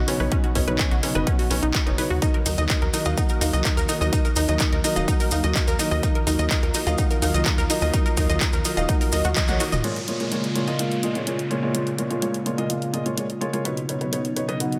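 A punchy, up-front electronic kick drives this emotional, expansive progressive house passage at 126 BPM in a straight 4/4, set in Eb minor and cut from a longer piece. A tight sequencer bass built from sawtooth, square and wave-folded tones pumps beneath lush, detuned unison pluck arpeggios carrying dub echo, while a felt-muted upright piano adds mellow, intimate stabs with audible action noise through a low-pass filter. An airy, breathy pad holds sustained chords under chorus, and the layered dance kit of handclaps, hi-hats and toms is joined at 2.2 s by grainy maracas in the background. The harmony moves from Badd9 to Ebm, then to Bbm7 as a drum fill and band accent at 9.4 s lead into a sparser second part where the kick, bass, pluck and maracas drop out by 9.8 s. There a downlifter descends over piano, pad and drums, with a filter sweep on the pad in both sections and light reverb throughout.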